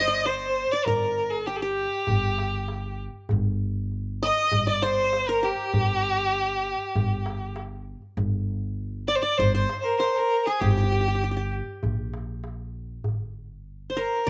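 A soulful, melancholic Arabic maqam ensemble piece at 98 BPM opens in G bayati with a clear, focused bowed violin carrying the melody over a bright-edged qanun second line, both touched by slapback echo, as a woody, dark pizzicato upright bass sits up front and a soft-handed clay darbuka joins at 0.1 s. At 8.2 s the music moves into G kurd for its second section, the violin's vibrato-laden line still leading the group. The recording is dry and outdoor in this short cut from a longer piece.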